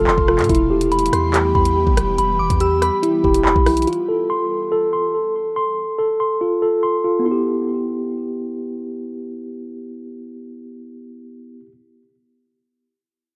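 A half-time drill groove at 142 BPM in 4/4 opens this menacing, tense hip hop excerpt in E phrygian. An electronic drum kit sits up front, with a knocking kick, bright hi-hats, handclaps and rim clicks. Beneath it, a deep, dark 808-style sine bass holds long, decaying notes. An ethereal, airy pad of detuned unison sawtooth and triangle tones sustains chords with a slow attack, ensemble chorus and built-in reverb. In the background, a glassy, crystalline vintage FM bell carries a second line, warbling through chorus, tremolo and digital delay. A mellow, clean tine electric piano plays arpeggios up front through a low-pass filter and delay over the chords Em, F and Em, and it carries on alone after the other parts stop near 4.0 seconds, until 11.7 seconds, in a rough home-demo mix with light reverb.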